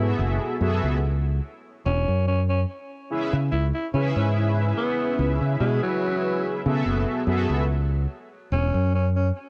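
A growling, raspy alto saxophone carries the melody with scooped notes and 12-bit sampler grit plus tape echo through this hazy, nostalgic vaporwave excerpt in swung 4/4, over mellow, detuned synth brass chords that stop at 7.7 s and a bright, up-front fingered electric bass, all softened by light reverb and a cassette-tape sheen.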